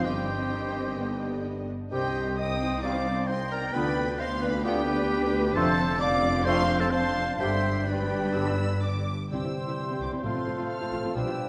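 Classical orchestral music, urgent and dramatic at 131 BPM with a rubato feel, moving from C minor to C major at 5.6 s, as a smooth violin section carries the melody over an airy flute, mellow clarinet, oboe and a dark, portamento-tinged second violin section, with lush violas, ringing harp arpeggios, very quiet horn and clear trombone chords, and rich cellos and woody double basses beneath, while a punchy bassoon and trumpet stabs join at 9.3 s, all in a wet scoring-stage reverb.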